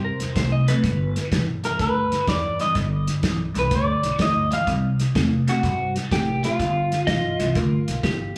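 A short cut from a longer electric blues shuffle opens with a slightly broken-up electric guitar, picked through a small old amp with spring reverb and tape echo, carrying the melody up front over a bright, overdriven guitar riff colored by a phaser. A clean, dark lap steel guitar adds a compressed, sliding second line for the first 1.5 seconds, then returns at 7.1 seconds. Underneath, a woody upright bass with gut strings gives a thumpy pizzicato foundation, and a soul drum kit joins at 0.2 seconds with a punchy kick, a medium-tuned snare and hi-hat, its top rolled off so it sits smooth and dark. The swung groove moves through C7, G, C and G7, giving a rollicking yet laid-back mood in a small room with moderate studio reverb. The lead guitar's tone is warm, lo-fi and compressed.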